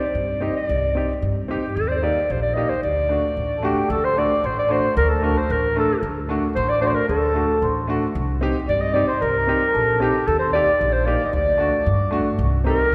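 A lush concert-hall reverb, with a 2.5-second tail, surrounds this soulful, bittersweet klezmer passage, cut from a longer piece and set at 113 BPM in a straight 2/4 feel in D phrygian dominant. Up front, a breathy clarinet carries the melody between G4 and Eb5, with a mellow, vintage subtone and light, jazz-inflected vibrato. Beneath it, a brilliant upright piano supplies intimate accompaniment, its action noise audible and its tone natural. The upright bass sits forward in the mix, its pizzicato on steel strings sounding thumpy and woody. At 3.6 s a reedy accordion enters with a smooth, dark second line in the same register as the clarinet, its dry tuning giving it a full tone-chamber body. The harmony circles through Cm, Eb and D, returning to Cm at 12.4 s.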